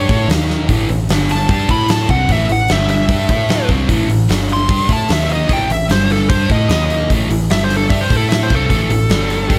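A straight 4/4 groove at 150 BPM drives this raunchy cut from a longer blues rock and southern rock power-trio piece: a huge arena drum kit with a fat snare, punchy kick and hi-hat in a pumping hall enters at 0.1 s and throws in a fill at 0.5 s, a bright, double-tracked crunchy overdriven guitar riff sits up front, a dark, round, foam-muted overdriven picked bass anchors the low end, and a bluesy distorted lead guitar carries the melody over chords shifting among D#5, A5 and G5, all in a mix with little reverb.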